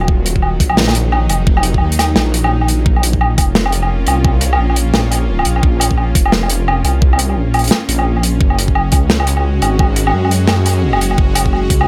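A half-time drum and bass groove at 173 BPM with a 59% swing on the sixteenths drives this dark, cinematic excerpt, where an overdriven, knocking electronic kick (dropping out from 2.5 to 2.9 seconds) is layered with an acoustic small-room kit of hi-hat, medium-tuned snare and woodblock, while a deep, rumbling detuned saw bass anchors the low end and a tense, string-like bowed drone with vibrato, built-in reverb and sidechain pumping sustains chords moving from Ebmadd9 to Bbm and Gbsus2.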